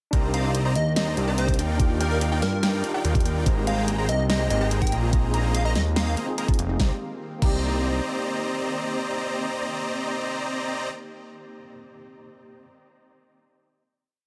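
Dreamy and bittersweet, this short future bass piece opens straight on a half-time drop, where a knocking electronic kick and a fat-snared pop kit with hat rolls drive huge, lush supersaw chords in a dotted rhythm and a thick, wave-folded analog bass with long gliding notes, chords and bass both pumping under sidechain. A catchy, punchy square-wave lead with tape echo plays short answering phrases over a worn, slightly out-of-tune tine electric piano with tremolo. Two very quiet unison plucks join in, one arpeggiating high above and the other doubling the chords in unison, and a shimmering, ethereal pad enters at 1.7 s. From 6.8 s everything settles onto a final Cm9 chord, with the drums dropping out at 7.5 s.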